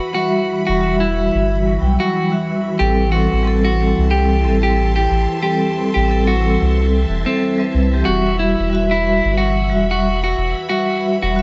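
A dark, clean electric guitar opens this hypnotic, cinematic trip hop passage, its picked melody sitting up front and trailing dub echo, while a vintage string machine voiced as cellos lays sustained, mellow chords beneath it, softened by a slow attack and colored with phaser and ensemble chorus. At 0.1 seconds a vibraphone played with medium mallets joins as accompaniment, its metallic, ringing tone shimmering through tremolo and a medium motor vibrato. A deep, round dub sub bass arrives at 0.7 seconds, soft yet up front and sustained. The groove moves at 91 BPM in 4/4 with a 58% swing on the sixteenths, in E minor, with the harmony shifting from Emadd9 to Am7 and back to Emadd9. Light reverb and a bed of vinyl crackle frame the sound, with the treble rolled off above 7.8 kHz, giving this fragment of a longer piece a dusty, late-night haze.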